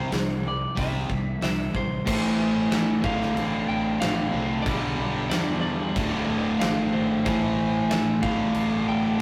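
A sludgy, dark distorted guitar dominates this menacing hard rock excerpt, grinding out a low riff at 92 BPM in D minor alongside a bright, cranked stack guitar playing the same register. Above them, a lightly driven lead guitar carries a compressed, slightly broken-up melody, while a growly fuzz bass sits underneath and a huge arena drum kit hits with a punchy kick, fat snare, hi-hat and crash, placed up front in a big room. At 2.1 seconds a second, double-tracked distorted guitar joins in the background, and a very quiet, moody analog pad fades in with slow-attack, detuned, chorused chords. The progression moves from C to Am, Dm/A, G/B and back to Dm, giving the aggressive riffing a brooding pull. The whole excerpt carries the rough, saturated character of a rehearsal-room recording, wrapped in a wet stone-room reverb.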